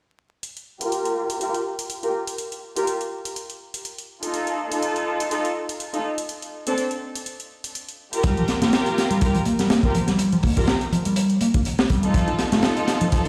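Crunchy, saturated breakbeat drums arrive up front at 8.2 seconds with a punchy kick, a high-tuned snare and hi-hat, gritty and rolled-off on top. This swaggering, raw breaks cut runs at 123 BPM in 4/4 with a 55% swing on the sixteenths, set in G minor and tuned to A4 = 436 Hz. From the start, a layered, tape-warm electronic hi-hat ticks along quietly, re-recorded in a large room, while a dark, woody string section plays bowed, lush stabs with vibrato through a low-pass filter, tape echo and a filter sweep. The chords move from Gm7 through F7 to Bbmaj9, returning to Gm7 at 8.2 seconds, just as a deep, round dub bass enters with a picked riff soaked in tape echo. The whole passage sounds as if played on a big sound system in a bare stone room, with moderate reverb and vinyl crackle giving it a dusty, lived-in grain.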